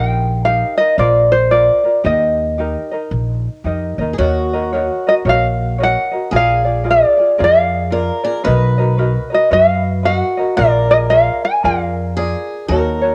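Languid and relaxed, this short Hawaiian excerpt swings lazily at 113 BPM in 4/4, opening in Eb major before turning to Eb minor at 4.2 seconds. A fingerpicked tenor ukulele carries the melody up front, light and warm, while a second tenor ukulele, also fingerpicked, fills in the accompaniment beneath it. An upright bass played pizzicato on steel strings sits up front too, giving a woody low foundation throughout. At 4.1 seconds a boxy, picked swing-style acoustic guitar joins with a quiet second line, its finger squeaks audible in the mix. Both ukuleles and the guitar carry a cassette tape colour and plate reverb across this home recording, with harmony moving through Ebm7, Bb7 and Bmaj7 in the minor passage.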